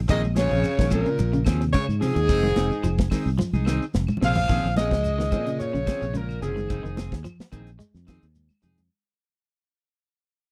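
Afrobeat in Bb minor at 109 BPM, this short cut from a longer piece has a defiant, funky mood and a dry, close 1970s-style studio sound in a small room. A tight funk drum kit with a medium-tuned snare and tight kick pairs with a round fingered electric bass that sits up front, while congas, a grainy shekere in the background and distant woody claves fill out the percussion. A clear, punchy horn section carries the melody with slapback echo, backed by a raspy, gritty tenor saxophone and a very quiet, smooth bass trombone that drops out at 3.1 seconds. One electric guitar at the edge of break-up plays twangy tremolo arpeggios in the background, and a clean electric guitar adds bright stabs through a lush chorus. The harmony moves between Bbm9 and Fm7, a drum fill arrives at 3.4 seconds, and the piece fades out from 4.5 seconds, the horns and saxophone stopping at 7.2 seconds.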